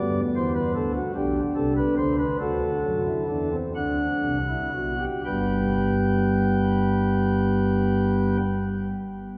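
Stately yet lively, this brief passage cut from a longer piece is a baroque-style three-part fugue in G major, written in 6/8 with a straight feel and moving at roughly 38-52 BPM counted in dotted quarters. A solo pipe organ on soft flute stops carries all three voices, its romantic voicing sitting up front and spanning G1 to G5. The tempo slows through the opening 5.2 seconds as the harmony moves from G through G/B to D7, then settles back on G when a new section begins at 5.2 seconds and runs to the close at 8.4 seconds. A cathedral reverb with a 4.4-second decay blooms around the organ, giving the recording the deep, resonant space of a church or concert hall. The instrument is tuned slightly low, with A4 at 437 Hz.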